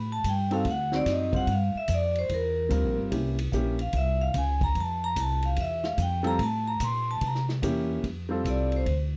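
A swung 4/4 groove carries this sophisticated small-group jazz and bop clip, in which a metallic, ringing vibraphone played with medium hard mallets and its motor off takes a solo over dark, woody pizzicato upright bass, an intimate grand piano with audible action noise, and a punchy, big-room drum kit of hi-hat, kick, snare and ride, heard in a dry, close 1970s-style studio recording as the chords move from Am7 through D7b9, Gm7 and C7b9 to Fmaj7, then back through C7b9 before landing on F at 8.0 seconds.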